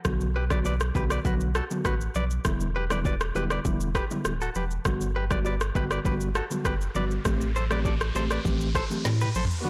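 A straight 4/4 afrobeats groove at 100 BPM drives this breezy, romantic clip, with a produced electronic drum kit (deep kick, woody snare clipped for bite, rim click, shaker and toms) up front beside a round, sine-like sub bass with tube saturation, while very quiet congas and bongos played with soft hands add a small-room patter. A mellow tine electric piano heard through built-in speakers carries the Bm, Em7, Gmaj7 and Am7 changes, and a twangy, compressed, direct-recorded guitar riff with slapback echo sparkles over the top. An electronic riser builds from 6.2 s toward a drum fill at 9.1 s, and at 9.7 s a breathy, whispered tenor saxophone and a smooth, expressive studio string section with portamento arrive just as the clip ends, all within a blown-out, overdriven mix carrying light reverb.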